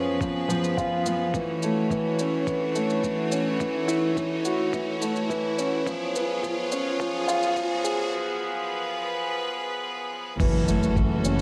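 A muffled, thumpy electronic kick and a small-room electronic shaker and crash cymbal set a straight pulse for this intimate, moving stretch of piano and strings electronica, cut from a longer piece. A dark, mellow grand piano riff with delay sits up front beside a bright, earthy bowed chamber string section holding sustained chords with sidechain pumping, all under a filter sweep and an electronic riser that gives way to a break at 8.1 seconds. At the drop at 10.4 seconds an electronic impact hits and a smooth, vibrato-rich bowed double bass section enters in the background, pumping with the sidechain in a moderate scoring-stage reverb.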